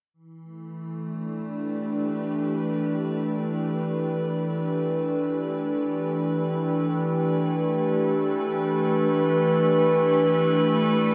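Floating in free time in E minor on a single Em7 chord, this melancholic yet serene ambient fragment, cut from a longer piece, features an evolving wavetable pad playing solo and up front from 0.4 to 11.1 seconds, its detuned, bright, triangle-like tone morphing with a slow attack and long release through chorus, a diffuse ambient delay and a lush hall reverb.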